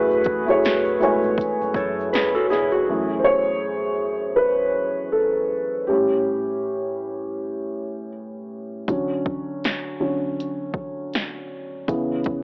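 A felt-muted upright piano opens this nostalgic, reflective lo-fi hip hop excerpt at 80 BPM in 4/4 with a lazy 16th-note swing, its soft, boxy tone sitting up front through a low-pass filter and cassette tape coloring. Beneath it, a deep dub fingered electric bass adds a round, dark bottom in the background, a very quiet, grainy tube shaker sparkles faintly, and a punchy analog drum machine with overdriven kick and snare, hi-hat and shaker joins almost at once. A mellow, clean electric guitar slips in briefly as a second line from 1.8 to 3.1 seconds, filtered and taped with a tape echo trailing behind it. The drums drop out just before 2.9 seconds, when the bass and shaker fall away. Once the guitar fades at 3.1 seconds, the piano carries on as a solo, moving from F#m9 through F#m7, A7 and Dmaj7. The drum machine returns at 8.9 seconds under the piano as the harmony settles toward C#m7. 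The whole recording has the hazy, lo-fi character of a home cassette recording heard over AM radio, with a light reverb around it.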